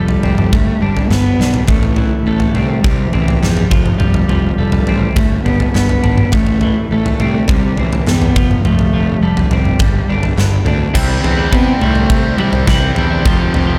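Dry and up front, this brooding, dark stretch of quiet-loud alternative rock moves at 104 BPM in a straight 4/4, with a huge arena drum kit of punchy kick, medium-tuned snare, toms and bright crash throwing in a fill at 1.4 seconds. A bowed, woody cello carries the melody with a dark vibrato over a compressed, twangy twelve-string electric guitar's arpeggios drenched in lush chorus, while a growly fuzz bass with overdrive sits in the background, cycling through Fadd9, G, Am and C. At 10.9 seconds an overdriven electric guitar riff cuts in just as the music moves to a Cadd9 section before the cut-off.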